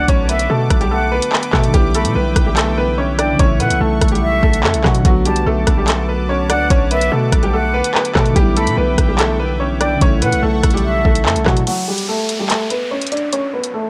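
A knocking, gritty drill drum kit of kick, bright hi-hats, handclaps and rim clicks sits up front in this ominous, dark B minor hip hop excerpt at 145 BPM with a half-time feel, over a punchy, heavy 808-style bass. A clear, woody, slightly detuned upright piano carries the melody through a low-pass filter, while an airy concert flute with vibrato and tape echo plays a second line above soft, round electric-piano-like synth keys and a smooth, evolving analog pad in the background. An electronic impact opens the piece, and at 11.7 seconds the bass, keys, pad and flute have dropped out, leaving the piano and drums over a downlifter in a short break on a B7(no3) chord.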